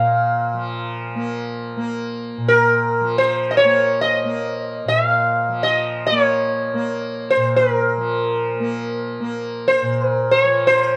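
A round, buzzing sitar sits up front in this short Hindustani classical fragment, its plectrum-plucked melody moving between Bb4 and F5 in raga Darbari on Bb while its sympathetic strings add a shimmer. Beneath it, a softly plucked tanpura holds a bright, shimmering drone from Bb2 to Bb3, set well below the sitar in the balance. The music unfolds in free time, with both instruments sounding together from 0.0 to 11.0 seconds, and the mood is solemn and introspective. A moderate small-room reverb gives the pair a close, intimate space. The whole recording carries the worn character of old cassette tape, with a warbly pitch drift, and it is cut from a longer performance.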